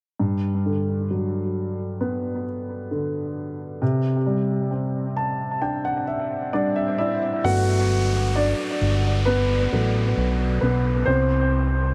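Bathed in moderate spring reverb and heavy echo, this heartfelt, emotional pop fragment opens on a smooth, vintage grand piano carrying a dub echo as the chords move from Gmaj7 to Csus2, with a piano fill joined by an electronic swell at 6.0 seconds. At 7.4 seconds a fat, saturated analog bass enters up front beneath a piano solo as the harmony returns to Gmaj7. The chords fall away at 11.1 seconds.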